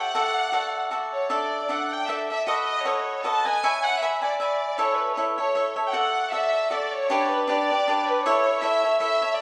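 A violin section and a cavaquinho begin together in this festive, proud slice of Mexican mariachi folk, moving in a lilting three-beat metre with a swung, rubato feel. The bowed violins carry the melody with expressive vibrato and an ensemble sheen, while the cavaquinho picks out a bright, crisp accompaniment through a progression opening on Dadd9 and closing on A. Both parts sit up front, bathed in the lush reverb of a large church or concert hall that lends the strings a distant glow.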